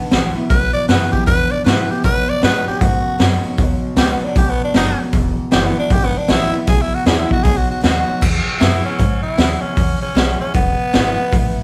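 A band playing live in one room, bathed in a moderate large studio reverb, gives this short retro rockabilly cut an upbeat swing feel. A raspy, close-miked tenor saxophone growls the melody up front and takes a solo from 8.2 seconds, over a punchy, saturated garage drum kit with a high-tuned snare, a woody, thumpy upright bass, and a twangy, slightly broken-up electric guitar riff that sits in the background until 8.2 seconds. A bright, full-bodied steel-string acoustic guitar, with audible finger squeak, picks a very quiet accompaniment throughout.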